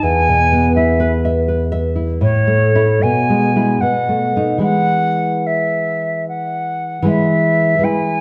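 A triple metre with a freely breathing rubato carries this lyrical romantic duo, cut from a longer piece. A silver concert flute sings the melody in a pure, straight tone with a crisp attack, while a thumb-plucked nylon-string guitar gives a warm, classical accompaniment across a broad register. Both sit up front in a reverberant recital hall, and a new section arrives at 7.1 seconds.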